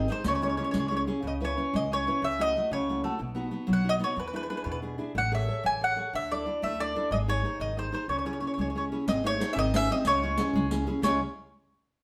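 A woody mandolin, picked on double strings, carries the melody up front in this passionate, wistful Italian folk serenade, a short cut from a longer piece in C# minor. It moves in a rubato 6/8 at around 122 BPM counted in dotted quarters. A bright, fingerpicked nylon-string guitar plays classical-style accompaniment just as prominently, while a thumpy, dark pizzicato upright bass on steel strings holds the low end. A smooth-topped, mellow clarinet in classical style appears in the background for the opening second, then returns at 9.1 s. A riq with saturated, compressed jingles joins it at both points. The harmony moves from C#m through F#m7/C#, E7, Amaj7 and Dsus2 before resolving between G# and C#m at the close, all heard as a band playing together in one room with a wet studio reverb.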